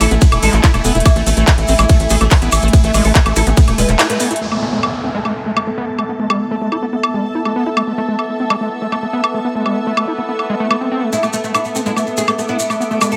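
Lightly reverberant and alien, this driving psychedelic trance passage at 143 BPM opens on a drop in which a tight electronic kick, a punchy sawtooth sequencer bass and a woody, plectrum-plucked fretless oud with phaser and tape echo ride over a squelchy, distorted acid bass riff, a dark pulsing gated texture and a bright, evolving granular cloud pad, the oud and these three backing layers all breathing with sidechain pumping. A layered drum and bass kit of handclaps, metallic hi-hat, ride cymbal and woodblock keeps going throughout alongside grainy background maracas, with a band accent at 4.0 seconds. After the kick and sequencer bass stop, an electronic downlifter sweeps in at 4.4 seconds, and the oud and maracas return at 11.1 seconds.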